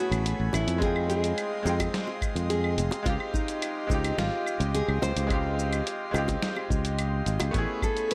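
Sunset chillout with a sunny, relaxed mood, heard as a short excerpt cut from a longer piece in a straight, easygoing 4/4. A fingerpicked nylon-string guitar carries the melody with a warm, deep classical tone and fresh strings, touched with delay. Beneath it, a bright grand piano with brilliant sustain and audible action noise plays accompaniment coloured by 12-bit sampler grit and tape echo. An airy, breathy pad with chorus and a slow attack holds chords in the background. A growly fretless bass sits up front from 0.1 seconds, as does a dusty, compressed sampler-style kit of claves, hi-hat, shaker and snare, with a deep analog electronic kick joining from 0.8 seconds and soft, dry bongos tucked behind. The harmony drifts from Amaj9 through Fm7 to a long Dbmaj9#11 before returning to Amaj9, all wrapped in light reverb.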